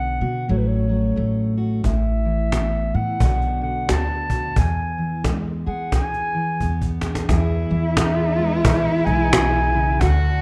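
The recording has a dark, gently reverberant production, with the fingerpicked dreadnought guitar and a snappy cajon sitting up front. It is an acoustic folk piece for a small band, hopeful and peaceful, moving at an easy 88 BPM in 4/4 with a lilting swing on the eighth notes, and cut from a longer piece. A distant, roomy clarinet carries the melody in a classical style over the full-bodied guitar and a woody, thumpy pizzicato upright bass, with the harmony passing through F#m/A, Asus2, Bm and E. The cajon joins at 1.8 seconds, and a drum fill at 6.6 seconds leads into a new section at 7.3 seconds. There a single bowed cello enters with a nasal, boxy, expressive second line full of vibrato and portamento, while a lush, warm studio string section holds sustained chords in the background.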